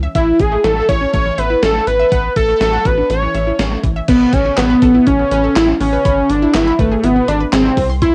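Synth-pop with a cool, driving mood, this short cut from a longer piece moves in a straight 4/4 and carries the worn, homespun sheen of a cassette home recording in a small, damp booth. A detuned unison pluck opens at 0.0 s with lush, full-bodied arpeggios sitting in the background, its sawtooth edge softened by tape, analog delay and plate reverb, while a rubbery, hollow square-wave bass bounces underneath with a dark, sustained tone. From 0.2 s a fat analog lead takes the melody up front, detuned with a sub octave and colored by vibrato and tape saturation. The gated 80s digital drum machine enters at the same moment with a thumpy kick, gated-reverb snare, handclaps, hi-hat and crash cymbal, its sampler-style hits sounding tape-warm. The harmony rests on A with a turn to D over A, then lifts at 4.1 s into an Aadd9 before settling on E over G# at 6.1 s.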